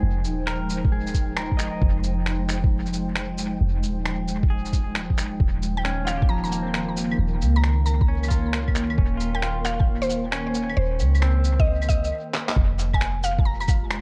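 A soft, round 808-style bass sits up front in this nocturnal, wistful future garage excerpt, its dark sine tone pumping against a thumpy, muffled electronic kick that enters at 0.8 seconds in a swung 4/4. An ethereal pad of detuned sawtooth and triangle voices holds sustained chords through ensemble chorus, built-in reverb and a gritty 12-bit sampler texture, while a clean semi-hollow electric guitar adds compressed, picked accompaniment through analog delay. Sampler-style shaker, finger snaps, claves, handclaps and cabasa, re-recorded in a small room, scatter through dub echo. At 5.8 seconds, shortly after the harmony moves from Fm9 to Eb7, a woody, mallet-like FM pluck brings a melody in chorus and tape echo. The guitar falls away at 12.1 seconds for a brief stop and drum fill before the groove returns on an Fmadd9, all set in an echo-heavy mix with light reverb and vinyl crackle.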